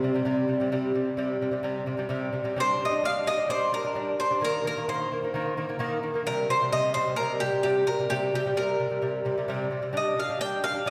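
Solemn and windswept, this Mongolian traditional excerpt moves at 130 BPM in a straight 4/4 in C minor, with a round, picked mandolin carrying the melody up front between G4 and G5. Beneath it, a bright, delicate nylon-string lute fingerpicks arpeggios through a slapback echo, while a husky horsehead fiddle with an airy bow, vibrato and portamento holds a C4 drone until 2.6 s, when the music moves into a new section. The players sound set further back in a wet concert hall with a long reverb and a faint mains hum.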